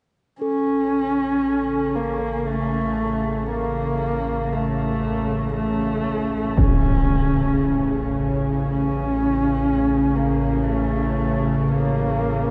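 A husky, woody horsehead fiddle opens this cavernous, desolate dark ambient drone with vibrato and portamento through shimmer reverb and hazy delay, over a metallic singing bowl ringing meditatively in the background. A tense, sawtooth-edged, string-like drone swells in low at 1.0 s, faint clangorous church bells arpeggiate from 5.0 s, and a huge filtered impact hits at 6.6 s, all within an enormous, wet, mellow reverb space in this fragment of a longer piece.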